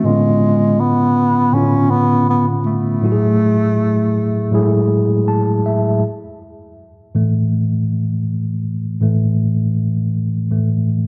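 A slow 4/4 groove with a gentle sixteenth-note swing sets a romantic, smooth soul mood in this section cut from a longer piece. Up front, a breathy bass clarinet carries the melody in a jazz style, its subtone voice shaped by vibrato, a soft attack and a smooth top, until it drops out at 5.2 seconds. Beneath it, a mellow tine electric piano supplies the accompaniment through its built-in speakers, sounding clean and sitting just as close as the horn, over rich extended harmonies that settle onto a bare open chord. The piano slips in a fill at 4.9 seconds and then takes a solo from 6.0 seconds onward, carrying the second section on its own. A moderate plate reverb and a dark, warm production wrap the whole performance in a soft, intimate glow.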